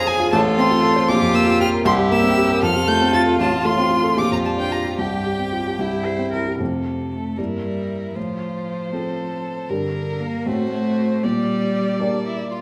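All four players sound together from the opening moment in this quick, restless movement for piano quartet in 6/8, its pulse pushed and pulled with urgent rubato. The dark baby grand piano sits up front as the accompaniment, mellow and intimate, with short sustain and audible action noise that give it a natural, up-front presence. Above it, one violin carries the melody in a clear, focused tone with vibrato, reaching high into its range, while a second violin adds a rich, smooth and even line beneath. The cello plays its own second line with light vibrato, a soft attack and an airy, sul tasto bow, sounding warm and close. A wet recital hall reverb surrounds the ensemble, and at 6.6 seconds the music moves into a new section where diminished chords such as Edim/G and F#dim/A darken the harmony before it settles on Gm/Bb. The recording is a fragment cut from a longer piece, ending at 12.6 seconds.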